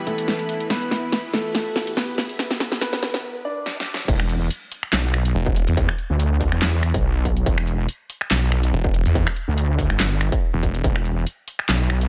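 Swung, half-time 4/4 drums at 142 BPM, with crash cymbal, finger snaps, handclaps, metallic hi-hats and a huge snare, drive this menacing, heavy wobble dubstep excerpt, where a lush, sidechain-pumped supersaw pad, a very quiet riser and an intimate, boxy grand piano with digital delay carry a filter-swept build-up until the drop at 4.1 seconds unleashes a chorused, overdriven wobble bass, a distorted electronic kick and bursts of growling, snarling saw bass in a dry, up-front mix.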